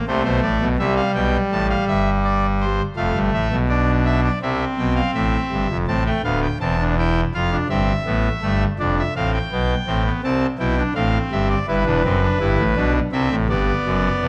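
A solo pipe organ on a brassy trumpet stop sounds a C5 at 0.1 s and launches this solemn, driving excerpt of a baroque-style three-part fugue at 83 BPM in a straight 4/4. Its bright, up-front voicing with crisp chiff spans D1 to A5 over chords moving from A minor through F and C, then returning to A minor at 5.9 s, passing through F again and turning toward E minor at 11.7 s, all carried by a moderate recital-hall reverb.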